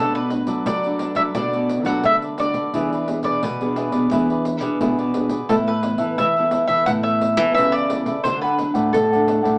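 A picked mandolin carries the melody from the very first moment, its woody double strings sitting up front, while a crisp cavaquinho and two classical nylon-string guitars play underneath. This short, festive piece of samba and choro in a straight 4/4 feel is cut from a longer performance. One guitar fills out the harmony with fingerpicked accompaniment, and the other supplies a thumb-plucked bass line. Just after the start, at 0.2 seconds, a jingly pandeiro joins, played with soft hands and sounding close and dry. The harmony moves through Bm7, E7, Asus2 and D, giving the passage a playful character. The whole ensemble sits in a small, reverberant room and is heard from further back, with a modest small-speaker quality to the sound.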